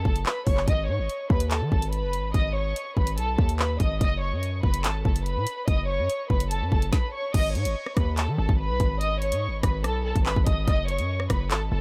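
A dry, close recording with the parts up front opens on a cold, dark drill hip hop groove at 144 BPM in a half-time feel, cut from a longer piece. A punchy, heavy 808-style sine bass with a noise layer and fast, decaying attack anchors the low end, while an electronic drill kit hits with a hard-clipped kick, woody snare, hi-hats, handclaps, rim clicks and crash cymbal. Above them, a dark, intimate studio violin section plays the melody sul tasto with light vibrato, soft attack and a smooth, filtered top, as the harmony moves from F#m to G#m at 7.3 seconds and back to F#m at 10.7 seconds.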